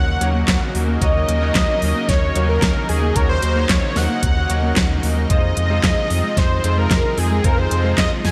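A straight 4/4 groove from a knocking electronic kick and an up-front pop kit of fat snare, crisp hi-hat and handclaps with gated reverb drives this moody, nostalgic synthwave excerpt, where a round, deep analog bass with tube saturation sits beneath a lush, detuned sawtooth pad pumping with sidechain, a tine-like FM pluck plays mellow arpeggios with chorus and delay, and a clear, vintage electric grand piano adds stabs in the background, while a thick, bold unison lead carries the melody with vibrato, lush chorus and digital delay in bright 1980s-style digital production.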